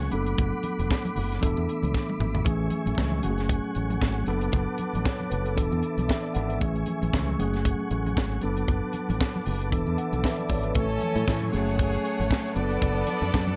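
Disco at 116 BPM in A major, this glamorous, danceable passage, cut from a longer piece, rides a lightly swung 16th-note feel. A tight funk drum kit sits up front with a high-tuned snare and a tight kick, dropping a short fill at 1.9 seconds, while very quiet, low-tuned congas with a thin skin and a hard-handed touch join just after the start. A bright, direct fingered electric bass anchors the low end, and a mellow, clean tine electric piano plays the accompaniment through its own built-in speakers, adding fills around 5.8 seconds and again just before the change. Beneath them, a soft, flute-like tonewheel organ holds sustained chords with lush chorus vibrato and a touch of key click. The harmony cycles through Bm7/F#, E7sus4, Amaj7 and F#madd9, and at 10.8 seconds an intimate chamber violin section enters up close as a second line, bowed sul tasto with light vibrato, a soft attack and a smooth, warm top.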